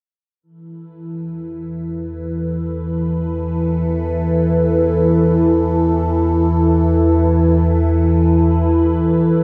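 A phased analog pad opens at 0.4 seconds, holding sustained chords on an Esus4 that swirl and evolve through phaser and chorus, its detuned sawtooth tone sitting up front. This is ambient, sequencer-driven space music in free time, mysterious and cosmic in mood, tuned to A4 = 441 Hz. At 1.7 seconds an analog drone joins underneath as a bass on a low E, blending sawtooth and pulse waves with pulse-width modulation, a slow attack and a long release under chorus. The drone fades in while a filter sweeps across the pad, so both sounds keep shifting as they sustain through to 9.4 seconds. A huge, wet reverb with a long tail and a dark, warm production wrap the two parts in a cavernous haze, and the clip is cut from a longer piece.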